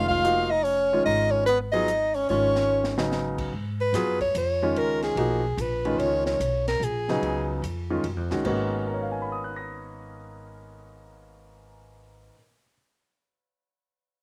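A close-miked soprano saxophone sits up front in this hypnotic, intense modal jazz excerpt, carrying the melody and taking a solo from 3.5 to 8.4 seconds. At the start a breathy tenor saxophone, mellow and whispered with vibrato, scooped notes and a slapback echo, traces a soft second line beneath it until 3.1 seconds. A vintage-toned grand piano, smooth and also up front, comps throughout in a swinging 3/4, moving from a rootless minor voicing to a richer minor eleventh chord near the end. Pizzicato upright bass with a woody steel-string tone anchors the low end, while a compact cocktail kit with dark cymbals, a high-tuned snare and a punchy kick plays quietly, adding a fill just before the solo begins. The sound is dry and close, captured outdoors with little reverb.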